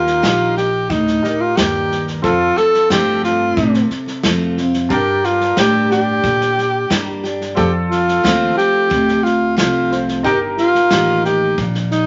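Honky-tonk and classic country with a nostalgic, down-home mood, this short cut from a longer piece moves in a straight 4/4 at 90 BPM. A clear, close-miked alto saxophone carries the melody up front, singing with vibrato in a classical style. Beneath it, a picked steel-string dreadnought guitar sounds bright and full-bodied, with audible finger squeak, while a pizzicato upright bass gives a woody low end. A natural country drum kit recorded in a small room plays hi-hat, a medium-tuned snare and a punchy kick from 0.1 to 12.0 seconds, and a detuned, jangly vintage upright piano sits in the background. The chords move from Eb through F and Gm, then back through F before settling on Eb. Everything is wrapped in moderate studio reverb and a vinyl crackle with a dulled top end that lends an old-record feel.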